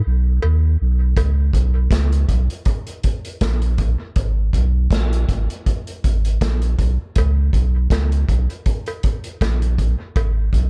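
Heavy and hypnotic, this swung dub reggae excerpt rests on a deep, round, soft sub bass sitting up front from the start, joined at 1.2 s by a vintage acoustic drum kit with punchy kick, medium-tuned snare and hi-hat in a small, pumping room with a rolled-off top, while a close, dry cowbell carrying dub echo sounds briefly near the opening and returns at 7.2 s, the whole mix shaped by a dark production and studio reverb.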